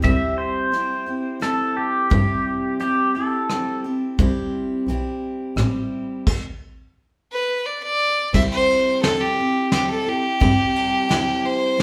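Heard in a wet stone room with the band playing live, this sunny, easygoing honky-tonk and classic country piece in 3/4 opens on a clean, compressed pedal steel guitar played with fingerpicks and slide, over a bright dreadnought acoustic guitar with fresh strings and finger squeak, a veiled, bowed double bass played con sordino, and a soft brush kit with dark cymbals, a fat snare and a tight kick, before a clear, intense fiddle with light vibrato takes the melody at 7.3 s and the bass drops out at 10.5 s in this short excerpt.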